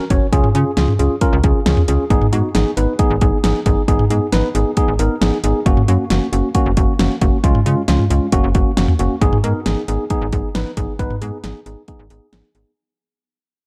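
A punchy, overdriven pop drum kit powers this driving, nocturnal synth-pop excerpt at 135 BPM in G# minor, its fat snare and metallic hats giving a layered electronic edge from a small room. A snappy FM bass with a fast digital attack and a mellow tine electric piano, softened by a low-pass filter, carry chords moving through C#, G#m and F#, set in light reverb and a dark production. From 9.2 seconds the piece fades out while a filter sweep passes over the electric piano.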